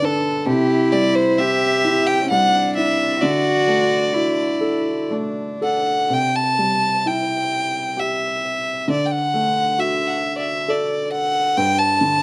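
This dry outdoor recording has almost nothing of a room around it, so the players sound close and exposed in a short cut from a longer Celtic slow air. In a loose, rubato 3/4 at roughly 58-69 BPM, tuned to A4 = 439 Hz, the mood is wistful and tender. A dark, woody fiddle carries the melody up front, one bowed player with light vibrato and portamento, touched by a slapback echo. An upright piano accompanies throughout, smooth and slightly detuned with a vintage character, sharing that same slapback echo. A cello, played sul tasto with an airy bow and soft attack, adds an intimate second line from 0.5 to 6.1 seconds. The harmony moves from Cadd9 to D, then C and D again, settling on G5 near 11.6 seconds.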